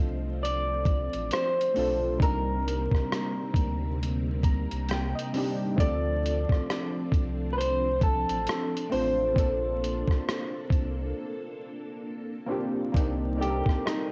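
A swung, unhurried 67 BPM groove in 4/4 sets this melancholic, reflective lo-fi hip hop piece in C dorian, cut from a longer track, where a dark, slightly broken-up electric guitar carries the melody over round, detuned analog keys with chorus, shimmering string-machine violins, a deep sine-and-triangle sub bass with octave, and a muffled, compressed sampler-style drum kit of thumpy kick, hi-hat and rim click entering at 0.4 s, all wrapped in cassette tape, vinyl crackle and home-recorded ambience, with a synth keys fill at 4.0 s and a break at 11.2 s before the chords return to Cm9.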